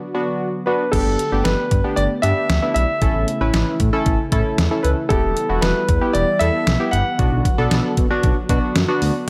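This melancholic, nocturnal synth-pop excerpt opens on a soft-attack, detuned sawtooth pad with chorus, sitting mellow in the background. Round, up-front analog keys join almost at once with decaying chords, a filter sweep and their own chorus. At 0.9 seconds the bass and a detuned 8-bit drum machine come in together: the drums are sampler-style, with a thumpy kick, a medium-tuned snare, hi-hat and crash, and they sound re-recorded in a small room. The smooth synth bass blends sawtooth, square and triangle tones with ring modulation into a sustained low end. Entering at 0.7 seconds, just before the bass and drums, an intimate concert grand piano carries the melody up front, present and polished, with audible action noise, long sustain and an analog delay. At a straight 115 BPM in B minor, the harmony moves from Bm through Gadd9, A and Em before returning to Bm, set within a light reverb.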